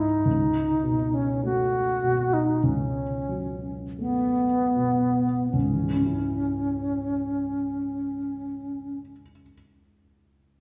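In a rubato 4/4 that drifts between 37 and 57 BPM and slows through the first 5.5 seconds, this short cut from a longer impressionist classical duo in C# minor feels mysterious and hazy. An airy alto flute carries the melody up front with vibrato and tongued notes until 9.0 seconds, while a baby grand piano accompanies in a dark, mellow, intimate voice with audible action noise and short sustain. A wet recital hall reverb sets the pair further back in the room, and the harmony moves from Bsus2/C# to C#m as the second section begins.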